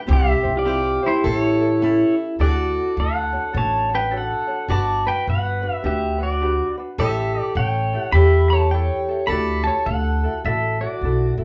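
Swung eighths at 104 BPM in 4/4 carry this sunny, relaxed Hawaiian excerpt in D major: an up-front pedal steel guitar, clean and compressed and played with fingerpicks, sings the melody with slide and volume swells over a bright, picked parlour acoustic guitar on a second line, a light fingerpicked ukulele in accompaniment and a woody, growly, thumpy pizzicato upright bass on steel strings, also up front, all captured as a band in one room under wet reverb while the chords move from C and A7 into Dmaj7, Gmaj7, A7 and Dadd9.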